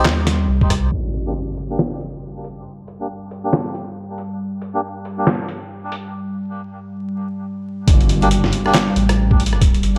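A dark analog pad holds a Cm chord with chorus while reedy, breathy melodica stabs sound through a low-pass filter and dub echo, and a detuned saw bass rumbles beneath a gritty, pitched-down sampler-style kit of snare, handclaps, hi-hat and rim click, all set in this heavy, cavernous, half-time deep dubstep cut from a longer piece. From 0.9 s an electronic impact hits as filter sweeps run over the pad and melodica, with the bass and thumpy kick dropping away until a break at 6.1 s. The drop lands at 7.9 s, bringing back the beating sawtooth bass, the compressed kick recorded in a large room and a second impact, all under light reverb, digital ambience and vinyl crackle.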